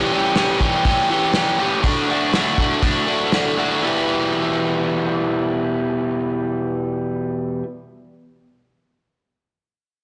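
An overdriven, bright, double-tracked electric guitar riff sits up front in this restless, cool indie rock excerpt at 122 BPM in E dorian, moving from A7 to D/A before settling on Em at 3.8 seconds, while a loose acoustic drum kit with a punchy kick, medium-tuned snare and hi-hat plays only from 0.4 to 3.4 seconds, all in a blown-out, overdriven recording with a moderate scoring-stage reverb.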